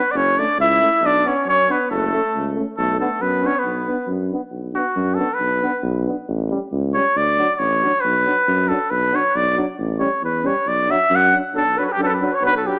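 Set in a brisk 2/4 at 137 BPM with a light swing on the sixteenths, this Balkan folk brass passage in B minor feels virtuosic and restless, and it is cut from a longer piece. A punchy cornet with a smooth top carries the melody up front in a classical style, and it takes a solo from 4.5 to 11.6 seconds over chords that move between B minor, A7 and D. A mellow flugelhorn plays a second line at the start, drops out at 4.1 seconds and returns at 11.6 seconds. Beneath them, a tuba with light vibrato holds the bass. Two euphoniums sit in the background as accompaniment: one clear and vintage-toned, the other soft in attack, both with light vibrato. The brass sounds as if played through a small speaker, set in a moderate recital hall reverb.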